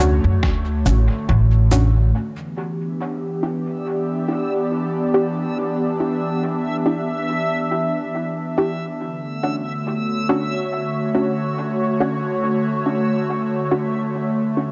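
Deep and meditative, this ambient dub excerpt at 70 BPM in E dorian floats on an airy, breathy pad and muted chorused chord stabs steeped in dub echo, with a woody pizzicato upright bass, a muffled lo-fi sampler kit and a tape-warm electronic kick dropping out by 2.1 seconds, after which a filter sweep moves across the pad over Em7, a reversed granular texture swells on E5 from 3.9 seconds, and the chords return to Dmaj7 at 9.0 seconds within a spring-reverb haze.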